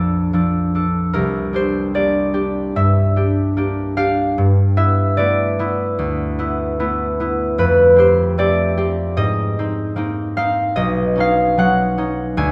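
Flowing in a rubato 4/4 around 75 BPM, this wistful, gentle classical passage is cut from a longer piece and features a solo concert harp tuned to A4 = 441 Hz, spanning Bb1 to G#5. The fingerpicked harp sits up front with an acoustic, ringing tone, bathed in a wet scoring-stage reverb with a 2.0-second tail. Its colorful extended harmonies drift from Bbmaj9 through C9 and G13 to Fadd9, G#add9 and finally Badd9 at 10.8 seconds.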